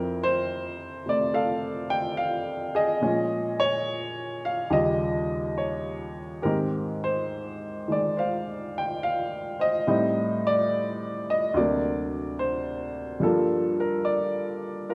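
This solo jazz fragment, taken from a longer piece, sets a lone upright piano in a swinging yet moody frame at a slow 71 BPM in 4/4. The eighth notes carry a swing of about 69%, and the time stretches freely in rubato fashion, so the pulse breathes more than it marches. The piano has a woody, polished tone, placed up front and present, and it ranges from D2 up to G5, with tuning set slightly high at A4 = 442 Hz. The harmony drifts from Fmaj9 through Bbm7, Eb9 and Abmaj7, then darkens with Am7b5 and D7b13 before settling on Gm7 at 13.2 seconds. A moderate large-studio reverb with a 1.5-second tail gives the instrument a roomy glow across the roughly 15-second passage.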